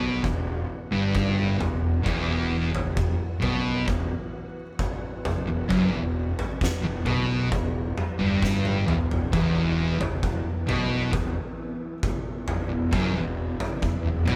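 Heavy and sludgy, this stoner and doom metal passage, cut from a longer piece, crawls along in a straight 4/4 on a single E minor chord. Two thick fuzz guitars carry the distorted, picked riff low in the register: one dark and up front, the other warmer and set in the background. Beneath them a fingered electric bass adds a growly, overdriven fuzz tone, also sitting back in the mix. An oversized, low-tuned acoustic kit joins at 0.2 seconds, up front and gritty, with a punchy kick, a fat snare and toms in a bright stone room that pumps with saturation, and it plays a fill from 8.4 to 9.3 seconds. A very quiet, vintage organ-string ensemble holds soft-attack sustained chords with an evolving, chorused shimmer, and the whole band sounds as if it is playing live together in one room under light reverb.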